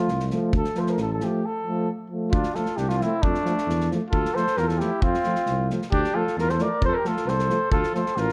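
Over a brisk, straight 2/4 pulse at 134 BPM from an up-front acoustic drum kit with a tight kick and medium-tuned snare in a small, pumping room, this fiery, virtuosic Balkan brass band fragment in D minor sets a punchy, roomy flugelhorn melody spanning D4 to D5 above a distant tuba bass with light vibrato, a smooth-topped euphonium in the background and a close-miked, soft-attack trombone, pausing for a break from 1.4 to 2.3 s before a mellow trumpet second line enters at 2.3 s, all swaying between F and Dm in a dark production with light reverb.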